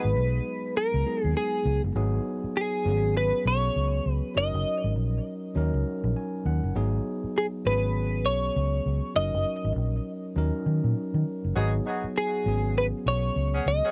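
This home cassette recording has a light reverb and a worn, tape-softened patina over a bouncy, slick R&B groove with a swung sixteenth-note feel, cut from a longer piece. A direct-recorded clean electric guitar carries the melody up front, its bright, picked, twangy tone compressed and treated with analog chorus. Beneath it, a bell-like tine electric piano supplies clean accompaniment, adding a short fill at 5.9 seconds. A dark, round, foam-muted fingered electric bass sits punchy and forward with an amped vintage character. A mellow horn section with jazz-style vibrato and analog delay lands a stab at the opening and returns at 11.6 seconds, while the harmony circles through G#m7, C#7sus4/G# and F#6, with a D#m7 passing through before the cycle returns.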